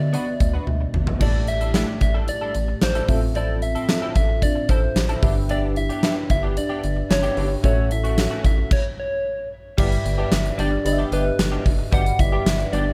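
This 1980s-style pop excerpt moves at 112 BPM in a straight 4/4, with an uplifting, nostalgic mood. A huge arena drum kit sits up front from 0.1 seconds, with a punchy kick, bright cymbals, snare, toms, hi-hat and tambourine, and an early drum fill kicks the groove into motion. Underneath, a rubbery square-wave bass bounces with a dark, plucky filter, while a mellow FM electric piano supplies soft, round chords colored by chorus. A clean, direct-recorded electric guitar plays a compressed, picked riff through analog chorus, and a gentle FM synth lead carries the melody with a warbling, vintage vibrato. At 4.4 seconds a buzzing, woody marimba with soft mallets joins in the background as a second line touched with delay. The harmony moves from Bm/D through A7sus4, Fmaj7/A, G6 and A6, a stop at 8.7 seconds briefly halts the groove, and the passage resolves onto G inside a moderate small-room reverb.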